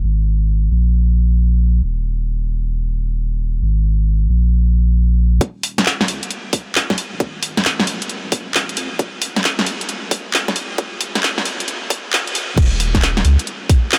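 A deep, thick sub bass opens this late-night, soulful two-step garage excerpt, its saturated triangle tone sustaining with a fast attack and sitting up front in the low register. At 5.4 seconds a tight electronic kick and a layered garage kit arrive together, bringing a cracking snare, warm hats, handclaps and crash cymbal, all re-recorded in a small room for close, present punch. The swung sixteenth-note feel gives the groove its loose, rolling shuffle as the section builds. At 12.6 seconds the drop lands briefly before the piece is cut off. A light reverb adds a touch of space to the mix.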